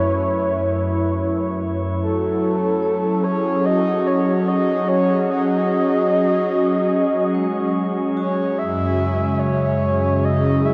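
A breathy, flute-like synth lead carries the melody up front in this serene, melancholic ambient piece, its soft attack and gentle vibrato touched by subtle chorus and tape echo. Beneath it, a smooth, detuned analog pad holds sustained chords with a warbling, vintage character and lush chorus, moving from A/F# to F#m at 2.0 seconds and then to C#m/F# at 8.6 seconds. Vibraphone arpeggios, struck with medium mallets and the motor off, ring airily in the background through tape echo while fading in across the full 10.7 seconds. A glass harmonica adds a pure, ethereal texture with slow, beating tones, also in the background and fading in the same way. The music moves at an unhurried 73 BPM in 4/4 with a straight feel, in F# dorian tuned to A4 = 438 Hz, set in an enormous, wet reverb with a dark, warm production, and the passage is cut from a longer piece.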